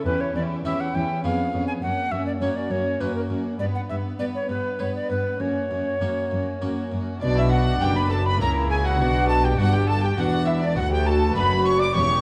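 Classical in a baroque concerto style, this driving, dramatic passage in B minor moves at 102 BPM in a straight 3/4 and is cut from a longer piece with solo episodes. An airy, wooden alto recorder carries the melody with vibrato, tongued attacks and an expressive chiff, while a close violin section with gut-string tone and light vibrato also plays the melody. A second, nasal violin section sits in the background with a second line, and a background viola section adds period-style accompaniment beside a bright, plucked harpsichord using one set of strings. A distant cello section holds the bass from the start, joined at 7.2 seconds by a rich double bass section as the music turns from a dominant-leaning opening around F# toward B minor and D. The production is dark and warm, set in a recital hall with moderate reverb that lends the period ensemble a reedy, chamber-sized glow.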